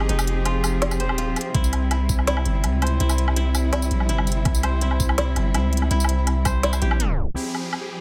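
Tense and cinematic, this brief cut from a longer half-time drum and bass track moves at 165 BPM in 4/4, its chords shifting from Fm7 to C and back to Fm. A rich, lush cello section bows smooth, vibrato-laden sustained chords that pump under sidechain compression, while a dry, woody koto plucked with fingerpicks spins mellow arpeggios through a delay. Beneath them, a deep, sine-toned 808-style bass sits up front with a fast attack and long decay, and an eerie, metallic FM drone hovers in the background with chorus and reverb. The organic electronic kit supplies crisp hats, a woody snare, tambourine and woodblock in a small room, joined by an overdriven, knocking electronic kick at 1.5 s and again at 4.5 s. A tape stop at 7.0 s drags the groove down before an up-front downlifter closes the passage at 7.4 s.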